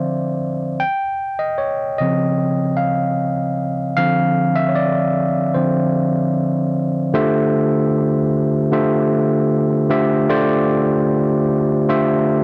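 A dry, close recording in a 1970s studio style, with light reverb, presents a smooth, lush soul excerpt at 76 BPM in straight 4/4. A solo tine electric piano, overdriven through a combo amp and sitting up front, sounds bright, barky and gritty as it ranges from Db3 to G5 over chords moving from Dm7 to Dbmaj9 and back. At 7.1 seconds the harmony settles onto Dm11 for the closing passage, which runs to 12.4 seconds.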